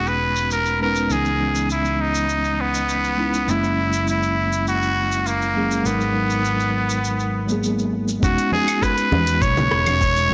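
Sunset chillout in a smooth, sunny mood, cut from a longer piece, where a nasal, raspy trumpet with straight mute sings a jazz-style lead through digital delay over a mellow tine electric piano, a round, dark fretless bass with tube saturation and a filtered deep house kit of claves, hi-hat, rim click and shaker, until a gritty, thumpy electronic kick arrives at 8.2 seconds and ringing congas follow at 8.5 seconds, all bathed in plate reverb on a blown-out, overdriven recording.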